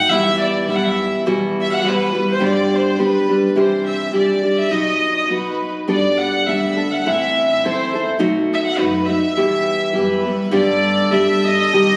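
Captured on a phone in the room, this short cut from a longer piece sits in a wet concert-hall reverb, with added studio reverb and compression. It is a passionate, dramatic mariachi piece in E minor, moving at 103 BPM in 2/4 with a rubato feel. A bowed violin section carries the melody up front, its gut-string tone reedy and smooth on top with light vibrato in a period style. A full-bodied, fingerpicked nylon-string guitar provides the accompaniment beside it, acoustic and fresh-stringed with a deep classical character. In the background, a woody, dark pizzicato upright bass plays briefly at the start, then returns at 5.9 seconds, while a mellow, distant trumpet adds a roomy classical second line from 10.5 seconds as the harmony moves from Em to G.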